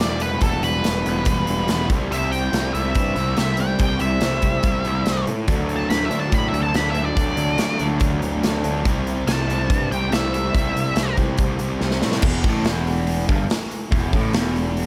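A dark, octave-fuzzed lead guitar carries the melody through wah, distortion and slapback echo until 11.2 s, over a bright, double-tracked fuzz guitar riff and a growly, overdriven picked bass in this gritty, heavy blues rock power trio and southern rock cut at 142 BPM in E minor. A big acoustic rock kit sits up front with a punchy kick, medium-tuned snare and bright cymbals, and its fill at 11.8 s leads into a new section at 12.2 s as the chords move from Em through C, D and C back to Em. The whole is set in light reverb and small room ambience, cut from a longer piece.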